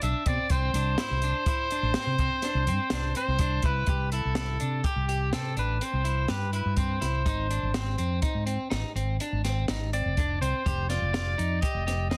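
A vintage, jazz-style trumpet with light vibrato and scooped notes leads this intricate, driving progressive instrumental in 7/4, its up-front melody bathed in plate reverb and digital delay alongside a slightly broken-up electric guitar's picked arpeggios, while a round, dark fretless bass sits forward and a small-room acoustic jazz kit with a high-tuned snare, boomy kick and rolled-off top pushes through Bm, Cadd9, Ab and Fsus2 in a dense, heavily limited master.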